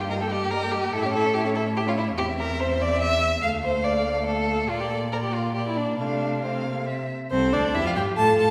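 Spirited and lively, this quick classical-period string quartet excerpt in F major moves at 142 BPM in 3/4, with a first violin singing the melody from C5 to A5 with vibrato, portamento and a soft attack, a second violin set up front carrying an expressive line beneath, a viola supplying bowed accompaniment, and a close, intimate cello playing the bass sul tasto with light vibrato and an airy bow, all heard from further back on a reverberant scoring stage as the harmony passes through Eb/G, Dm and Bb before a new section begins at 7.3 seconds on F/C.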